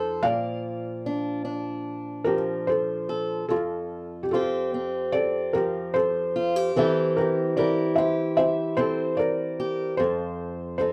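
A felt-muted upright piano carries the melody in this short excerpt from an acoustic folk-pop ballad, its soft, mellow tone sitting up front with audible action noise and a short, natural sustain that feels intimate. Beneath it, a fingerpicked acoustic archtop guitar supplies warm accompaniment through a nostalgic yet hopeful progression of Bbmaj7, Fadd9, C7/E and F7 in F major. The unhurried 74 BPM pulse in 4/4 and light reverb give the 10.9-second passage a gentle, close-knit glow.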